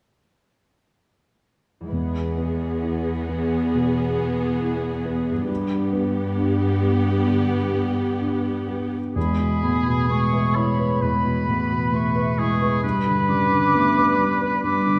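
Cinematic, moving and uplifting, this rubato passage at 66 BPM pairs a dark, mellow concert grand piano with ringing, thumb-plucked harp arpeggios in the background, joined by lush, vibrato-rich viola and clear, focused cello sections over E and G chords until 8.9 s, after which a pure, expressive flute section, a distant, roomy solo oboe and a soft-attack solo clarinet carry second lines from 9.2 s, set in a moderate concert hall reverb.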